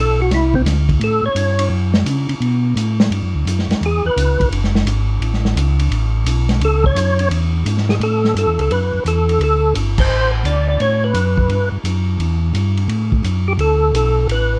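Light reverb gives this short soul jazz organ trio excerpt an intimate, slightly roomy sound. The mood is greasy and bluesy, swinging at 172 BPM in 4/4 in A mixolydian. Up front, a fat, percussive tonewheel organ carries the melody with third-harmonic percussion, key click, chorus vibrato and a slow rotary speaker. It takes a solo over the first 8 seconds in broken phrases, then settles into a continuous line from 6.6 seconds onward. A second tonewheel organ, mellow, round and dark, holds down the bass throughout, also with key click and a slow rotary speaker. The acoustic vintage drum kit sits further back, muffled and lo-fi in a small room, with dark crash, ride and hi-hat, a medium-tuned snare and a tight kick. Chords such as Bm7, E69 and A13 pass by, and the band hits an accent together at 9.9 seconds.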